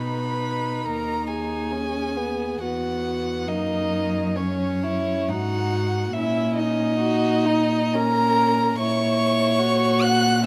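Elegiac and solemn, this slow romantic movement for string quartet unfolds in triple metre with rubato and uneven beats, all four players sounding together for nearly its full 10.5 seconds. The first violin carries the melody up front with a warm, airy sul tasto tone and light vibrato, while the second violin adds a dark, woody line beneath. The viola supplies a nasal, intimate accompaniment, and the cello anchors the bass with soft-attacked bowing. A moderate recital-hall reverb surrounds close, detailed microphones as the harmony moves from B toward F#7 over A#.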